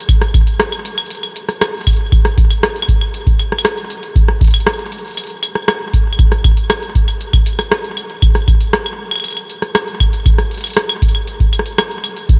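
A light reverb and a digital ambience frame this short IDM clip, which is cut from a longer piece and carries an eerie, glitchy mood. An electro analog drum machine opens at 0.0 seconds, sounding up front with claves, hi-hat and rim click, its metallic hats touched with a tape-warm character and set in a delay. An electronic kick drum joins at 0.1 seconds, dry and deep, sitting up front and louder than the drum machine. The two percussion parts run together in a straight 4/4 feel until the clip ends at 12.4 seconds, giving the music a spare, analog pulse.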